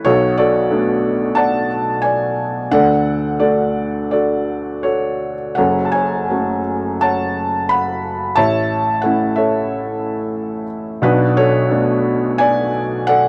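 Rubato phrasing stretches a 4/4 pulse between 81 and 94 BPM in this moody, bittersweet fragment of lyrical classical solo piano, cut from a longer piece. A felt-muted upright piano plays alone for the full 13.3 seconds, spanning F#1 to B5 with a soft, intimate tone and the thin sound of its felt, through a Bm7, D, F#m, A progression that returns to Bm7 at 11.0 seconds. The close, detailed miking keeps the piano up front in a dry room with little reverb.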